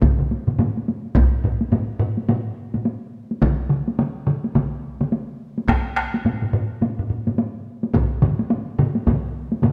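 A swung sixteenth-note pulse at 106 BPM in 4/4 drives this short passage of Japanese traditional taiko drumming, cut from a longer piece and carrying a ceremonial, powerful mood. A solo taiko drum part sits up front beside three taiko ensemble parts, each struck with hard sticks, and they sound together from the opening moment, with one ensemble part dropping out at 9.2 seconds. The solo drums and one of the ensemble parts have a compressed, saturated punch, while the other two ensemble parts carry the character of a small room. A brief opening gives way at 1.2 seconds to the main passage, which runs to the end. A moderate scoring-stage reverb adds space around the drums.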